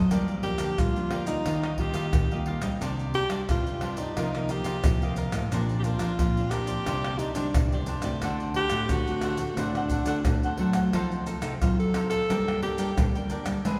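A clear alto saxophone leads this lively, festive samba and choro passage, entering at 0.4 seconds and playing up front with jazz-style vibrato, a subtone and scooped notes. Beneath it, a fingerpicked nylon-string guitar gives full-bodied, deep classical accompaniment, while a bright, crisp picked cavaquinho adds a higher accompaniment part. A second nylon-string guitar carries the bass line in the background, warm and fingerpicked with audible finger squeak. The percussion of deep surdo, maracas, pandeiro and tamborim sits up front, played with soft hands. The harmony moves from Gm7 through Ebadd9, Csus2 and D7 before settling on Gm, and the whole cut is bathed in a wet, church-like reverb with a 2.8-second tail.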